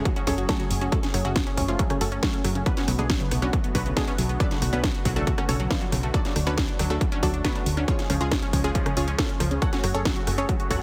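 Heavily compressed with a radio-like sheen and light reverb, this soaring, emotional uplifting trance passage opens on a barely audible sub drop under an impact as a lush, detuned sawtooth unison pluck carries the melody through digital delay, with a mellow, evolving supersaw swell holding chords in the background. A distorted, overdriven electronic kick sits up front beside a techno kit with a cracking snare, hi-hat and rim click, while a round, dark FM bass enters at 0.3 seconds. A second unison pluck with a filter sweep plays arpeggios behind them, and sidechain pumping moves both plucks, the swell and the bass as the chords cycle from F#madd9 through Bm7, D and C# back to F#madd9.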